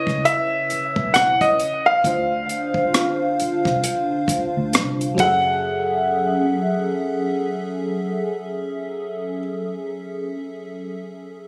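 A slow 4/4 groove with a lazy sixteenth-note swing sets an introspective, soulful neo-soul mood in this R&B fragment, cut from a longer piece. A compact cocktail drum kit sits up front with a dry, acoustic sound, pairing a punchy kick with hi-hat, rim click and dark-toned ride cymbal before dropping out at 5.4 seconds. Beneath it, a vintage muted electric bass played with the fingers gives a round, amped low end. An FM electric piano with a soft pad layer supplies lush, dreamy chords with a fast attack, treated with chorus and phaser, moving from C#m7 through Dm7 to F#m9. A clear, natural baby grand piano carries the melody high in its range with a touch of tape echo, ending at 9.4 seconds alongside the bass, so the electric piano rings on alone until 11.5 seconds. The whole track has a compressed, roomy club-reverb character, as if heard from a phone in the space.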